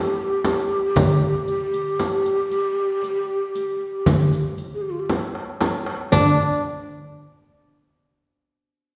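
A qanun, bright-edged and played with fingerpicks up front, opens together with a breathy low ney carrying a second line with vibrato, in a melancholic, hypnotic Turkish makam passage cut from a longer piece, moving at 116 BPM in eighths in 10/8. Moments later a crisp, metal-shelled darbuka, heard distant in a large room, joins a close, dry frame drum struck with hard hands and a riq with bright jingles, and a drum fill runs from 5.1 to 6.1 s, leading into a new section at 6.1 s. The ensemble is heard from further back in a reverberant recital hall, and the parts stop at 6.6 s.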